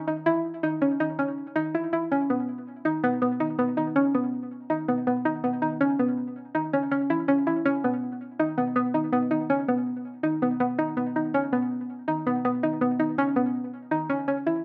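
Intricate and driving, this progressive instrumental in 5/4 is carried by a lone soft, round synth pluck that plays solo from 0.1 to 14.6 seconds, spanning B3 to E4. The dark pluck has a fast attack and a decaying tail, with a sub octave, ring modulation and a chorus shimmer, and it sits up front in a moderate studio reverb. The passage shifts into a new section at 2.1 seconds and is cut from a longer piece.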